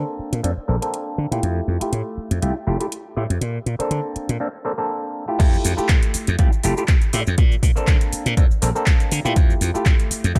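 Filtered disco house at 121 BPM in F major with a light sixteenth-note swing, this sunny, funky passage is cut from a longer piece and moves between Bbmaj9 and Fmaj9 chords in a dark, warm mix with digital ambience. An overdriven, stringy clav through a combo amp with phaser and a glassy, growly slap bass sitting up front play from the start, both pumping against the sidechain and heard through a low-pass filter during a filter sweep, while a layered house kit of metallic hi-hats, shaker, handclaps and crash cymbal enters at 0.3 seconds. At 5.4 seconds the drop arrives with a punchy, tape-warm analog kick placed prominently in the mix.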